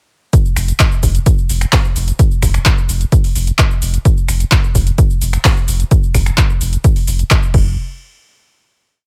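A four-on-the-floor kick drives this short acid house piece at 129 BPM in a straight 4/4, the dry, punchy electronic kick sitting up front from 0.3 seconds. A booming analog drum machine runs alongside it with programmed hats and backbeat, its metallic closed and open hats, cabasa, finger snaps, handclaps and crash cymbal roughened by overdrive. From 0.6 seconds a deep, round sub bass built on a sine tone plays off-beat notes around F1, with a fast attack and sustained body, thickened by tube saturation and pumping under sidechain compression. The whole piece is essentially one trippy, raw drop before a final hit at 7.8 seconds. The sound is close and dry, with little reverb, so the kick and bass stay tight and forward.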